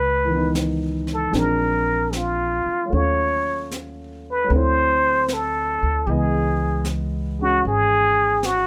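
A plunger-muted trumpet opens this intimate, smoky jazz ballad excerpt up front with a breathy, wah-wah solo melody and vibrato over woody pizzicato upright bass, joined at 0.2 seconds by natural-sounding baby grand piano accompaniment and at 0.6 seconds by softly brushed snare and hi-hat, all in a swung feel with light reverb.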